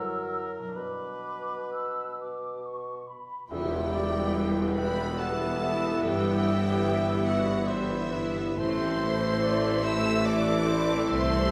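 Cut from a longer, elegiac classical movement in a rubato triple metre, this begins with a hollow, airy flute section and a warm oboe weaving second lines over ringing concert harp arpeggios, while an up-front, mellow solo bassoon accompanies until 3.1 s. At 3.5 s the full symphony orchestra arrives on a solemn accent: a clear violin section carries the melody with expressive vibrato and portamento, a second violin section and a viola section add rich inner lines, and very soft trombones and French horns hold chords. Dark trumpet stabs, a tuba, cellos and double basses in the bass, and a brief tam-tam until 6.8 s complete the sound, all heard from further back in a reverberant recital hall.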